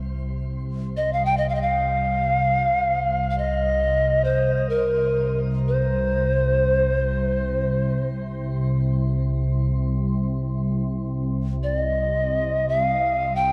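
A polished pan flute, airy and woody with vibrato and a crisp, chiffy attack, enters at 1.0 s over a calm, detuned organ-like drone on a low C that opens the piece, shaping a spacious, meditative world piece in free time and C minor pentatonic, with shimmer reverb and tape echo on the flute, ensemble chorus on the drone, and a lush hall around both in a dark production, heard as an excerpt from a longer work.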